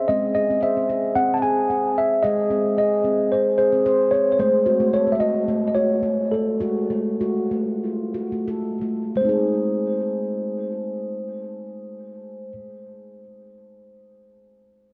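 A dark, lush hall reverb with a 2.5-second tail surrounds this meditative world piece, cut from a longer work and built on tuned percussion in G# phrygian dominant. A stainless-steel handpan sits up front, played with the fingertips in ringing, airy arpeggios between G#3 and B#4, and is washed in a diffuse ambient delay. Beside it, a mellow, clean tine electric piano heard through its built-in speakers carries the melody from A4 to A5, with the same diffuse delay. The pulse moves between 84 and 112 BPM in a straight 4/4, slowing down from 4.4 to 9.2 seconds as the harmony shifts from G# to F#m over G# and back to G# at 9.2 seconds. Both parts end around 12.5 seconds, closing out the hypnotic mood.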